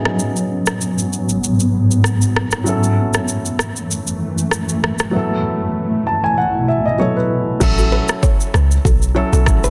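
A dense, heavily limited modern master with light reverb frames this mellow, smooth afrobeats excerpt at 97 BPM in 4/4, with a gentle 16th-note swing. A dark baby grand piano accompanies throughout, intimate and up front, its short sustain and audible action noise softened by a low-pass filter, while a cloudy, detuned granular pad holds blurred, slowly evolving chords through G#m7, F#m7 and B7sus4 under a filter sweep. An electronic afro-pop drum kit drives the groove with a deep kick, crash cymbal, rim click and shaker, carrying a gritty 12-bit sampler character and soft clipping on the snare. The piano plays a fill from 5.8 seconds, and at 7.6 seconds the music shifts to A6 as a round, percussive FM log drum bass enters with a fast-attack, decaying low end. A fingerpicked classical nylon-string guitar joins at 7.8 seconds with a quiet, delayed riff.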